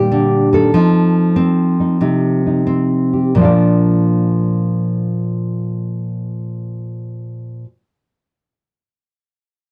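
A nylon-string guitar, dark and full-bodied, carries this short solo jazz passage on its own, cut from a longer piece and sitting up front in a dry, close, 1970s-style studio sound touched by light reverb. The mood is relaxed and playful, in Bb major and 4/4, with a swing feel on the eighth notes and a tempo between 86 and 98 BPM that slows over the first 3.4 seconds. The thumb-plucked tone has a deep classical quality, and finger squeaks can be heard on the strings. Harmony moves from Ebmaj9 to F7 at 0.7 seconds before settling on Bb at 3.4 seconds, where a second section begins. The guitar ranges from Bb2 up to D5 across the clip.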